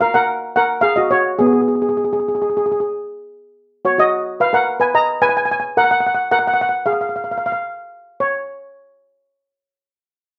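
Festive and sunny, this short calypso fragment moves at 110 BPM in a straight 4/4 feel, set in F# major with tuning at A4 = 438 Hz. A lone double seconds steel pan carries the performance, played with soft rubber sticks that give its metallic ring a mellow, shimmering glow across a range from B3 to A#5. The pan sits up front and mid-forward in the sound, with a gentle, rounded touch rather than a sharp attack. The harmony moves from F# to B and on to F#maj7(no3), with brief open moments where the chords drop away, and a new passage begins at 8.2 seconds just before the pan stops at 8.5 seconds. A moderate studio reverb and the feel of a live room lend the recording a natural, airy space, like a moment lifted from a longer piece.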